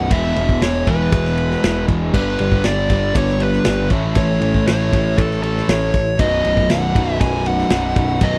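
Classic rock at 118 BPM with a swaggering, sunny feel, this dry, close 1970s-style studio excerpt moves through E, G, A and B as a dark, smooth overdriven lead guitar with slapback echo carries the melody up front over two picked riff guitars (one bright and distorted, the other crunchy and set in the background), a round, punchy fuzz bass, and a vintage drum kit with dark cymbals and a punchy kick, while a very quiet, reedy electric piano with fast tremolo joins at 2.1 seconds.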